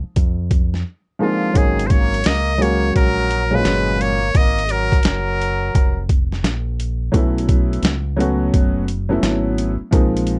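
A dark, warm production with light reverb sets a mellow, nocturnal mood in this jazz-hop excerpt at 86 BPM, swung in G# dorian over suspended ninth chords. A deep, round fingered electric bass opens alone before a gritty, compressed boom bap kit with a thumpy kick and a pitched-down, tape-warm character arrives up front, followed at 1.2 seconds by a woody, long-sustaining upright piano. A buzzy, thin trumpet in a metal mute carries the melody from 1.2 to 6.1 seconds, joined by a plunger-muted trombone playing a second line with a wah-wah tone and light vibrato.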